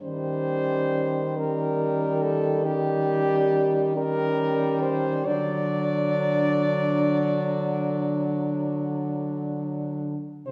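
Classical and lyrical, this short excerpt from a longer piece for horn quartet moves at a slow, rubato 46 beats per minute in 12/8, with a yearning, melancholic mood and harmony shifting from Eb7 to D at 5.3 seconds. A clear French horn carries the melody up front, a dark, vintage-toned horn with light vibrato sings a second line in the background, another clear horn with light vibrato provides accompaniment, and a mellow horn plays the bass up front. The ensemble is heard from further back in a scoring stage with a wet reverb.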